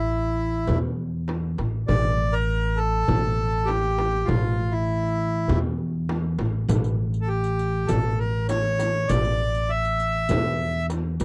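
Over a straight four-beat pulse, this melancholic, longing Arabic maqam ensemble piece sets a reedy, dark accordion melody up front beside a woody pizzicato upright bass with steel strings, both sounding from the opening moment. A crisp metal-shell darbuka played with soft hands sits in the background, joined by a small, bright frame drum heard at a distance in a large room, while a riq with dark jingles enters at 6.7 seconds, close and dry. The dry, close sound recalls a 1970s studio, and the clip is cut from a longer performance.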